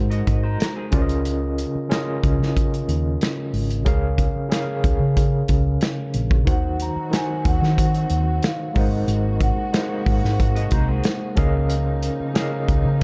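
A gritty, overdriven tine electric piano with fast tremolo opens this cinematic, bittersweet slice of lush 1970s-style soul, sitting up front beside a round, hollow-body fingered bass and a punchy studio drum kit with a pumping room sound, while a twangy, slightly broken-up guitar riff through a small old amp flickers in briefly with its own tremolo. At 6.5 seconds a mellow vibraphone melody with soft mallets and fast motor vibrato enters as veiled, con sordino strings arrive holding bowed chords in the background. The guitar riff returns at 10.6 seconds, all within a dark production and small room ambience.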